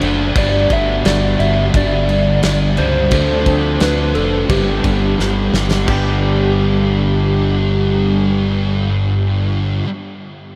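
Shoegaze-leaning dream pop rock drifts along at 87 BPM in G major, a hazy, dreamy excerpt cut from a longer piece and soaked in a huge ambient reverb with a 7.6-second tail. Up front, a thick, dark fuzz guitar carries the riff with distortion and ensemble chorus. Behind it sit a double-tracked crunchy overdriven guitar and a compressed, direct-recorded clean electric guitar whose riff trails into reverse reverb. A round, punchy fingered electric bass holds down the low end while a loose indie drum kit with dark cymbals and a punchy kick plays until 6.0 s, closing with a fill from 5.2 s. Entering at 0.4 s, a soft, keys-like FM synth lead sings a gentle melody coloured by chorus, vibrato and analog delay as the harmony moves from Gmaj7 to Dm7 and back to G.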